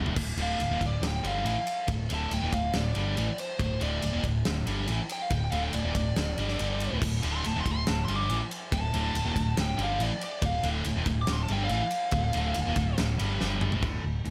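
Heavy and aggressive, this hard rock excerpt in D minor drives along at 141 BPM in a straight 4/4, cut from a longer piece. Two picked rhythm guitars carry the riff from the start, one a bright, cranked stack tone with overdrive and the other a scooped, high-gain sound with distortion, both sitting low in the register. Underneath, a hollow-body short-scale electric bass, played with the fingers, adds a dark, round and punchy bottom. A big acoustic rock kit sits up front with a fat snare, punchy kick, crash, ride and toms, opening with a fill and adding another between 13.4 and 13.8 seconds. Over this, a smooth, warm overdriven lead guitar takes a solo in a high register from 0.4 seconds, and the whole mix is set in light reverb.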